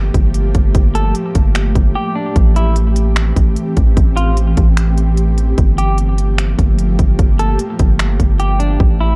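A trap drum kit sits up front in this atmospheric cloud-rap excerpt, its hard-clipped kick and crisp hats joined by finger snaps at 149 BPM in a half-time 4/4 feel, with a brief break from 2.0 to 2.4 seconds and the hi-hats muted from 8.8 seconds. Beneath it, a long sustained 808-style bass with a deep, sine-like tone and fast attack holds the low end, also placed up front. An ethereal, airy pad carries sustained chords through ensemble chorus and built-in reverb, its detuned unison layers softened by a slow attack and long release and pumping against a sidechain. From 0.9 seconds a clean electric guitar picks out a compressed melody, its tone rounded by a low-pass filter and trailed by delay. Set in G dorian and moving from Gm9 to Am7 and back, the piece feels spacious and melancholic, wrapped in a dark digital ambience.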